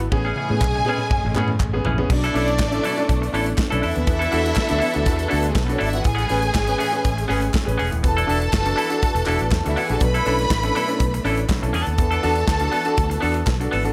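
A drum fill on a modern studio kit with punchy kick and bright cymbals opens this driving, danceable disco excerpt at 121 BPM, as a punchy fingered bass through an envelope filter sits up front alongside clear concert grand piano, a clean, compressed semi-hollow electric guitar, and a woody string section holding sustained chords in the background. From 0.1 seconds a lush symphonic violin section with vibrato carries a second line, while crisp group handclaps join in the background at 0.6 seconds. The harmony moves through Amaj9, Bm11 and E7sus4 under light reverb and studio ambience.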